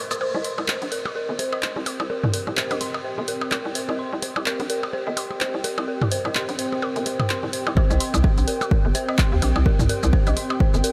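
A swung 127 BPM pulse in 4/4 drives this quirky, sparse minimal techno cut from a longer piece, with a punchy, tape-warm analog drum machine of handclaps, hi-hat, rim click and shaker, re-recorded in a small room, alongside electronic percussion blips and toms trailed by analog delay. A hollow, bouncy FM bass sits up front from 0.3 seconds, knocking and decaying, pushed through tube saturation and a high-pass filter and pumping with the sidechain. Over it, a dark, detuned synth bell riff with an eerie, inharmonic tone moves between Bb4 and C6, mellowed by chorus, a low-pass filter and analog delay, and it too breathes with sidechain pumping. From 0.9 seconds an ethereal, airy pad of detuned sawtooth and triangle voices fades in slowly and sustains, glazed with ensemble chorus and its own reverb. At 7.8 seconds the drop arrives as a punchy, up-front electronic kick drum finally lands, and the whole dreamy mix floats in a huge ambient reverb.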